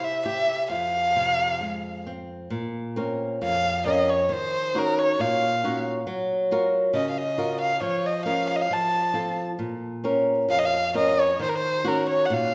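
Set in a wet recital hall with a lingering reverb, this mournful, longing fado fragment, cut from a longer piece, unfolds in a loose, rubato 2/4. Up front and intimate, a single erhu carries the melody with an airy bow, soft attacks, vibrato and sliding portamento, while a bright, fingerpicked flamenco guitar with fresh strings accompanies it throughout. After opening on C and Fm, the harmony settles from 2.5 seconds into a darker minor progression moving through Ebm7, Gbmaj7 and F.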